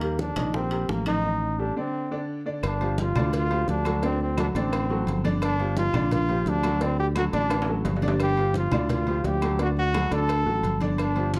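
Salsa at a driving 172 BPM in G minor, this fiery fragment of a longer piece moves from a brief opening section into a break at 1.2 seconds, then launches a second section at 2.6 seconds. A brilliant, up-front trombone carries the melody with light vibrato and a smooth top in a pop-style solo, while a clear baby grand piano accompanies with a worn, intimate tone, short sustain and audible action noise. Underneath, a punchy, growly fingered electric bass sits direct and up front, anchoring the chords from Ebmaj7 through G5, D7 and Gm7. Congas with a damped, thin-skinned sound and tight, high-tuned bongos with cowbell sit in the background, joined by ringing, saturated metal-shell timbales with agogo bells and very quiet, woody claves. A drum fill at 7.5 seconds pushes the groove onward, and the whole mix has a dark production and moderate large-studio reverb.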